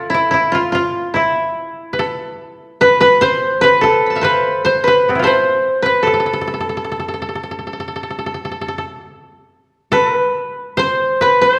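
A koto carries the melody, its woody, fingerpicked tone sitting up front between E4 and B5, while a second koto plays a supporting line between B3 and C5 from the start of this 11.6-second excerpt. This is austere, still Japanese traditional music in A hirajoshi, tuned to A4 = 442 Hz, moving in a rubato 4/4 at around 67-75 BPM. Both koto parts have a dry, acoustic attack and sound together throughout, with the melody sitting a little louder than the second line. A moderate recital hall reverb of about 1.6 seconds surrounds them. The whole recording carries the worn character of old cassette tape, with a warbly pitch drift. The music shifts into a new section at 9.5 seconds before the clip ends, as it is cut from a longer piece.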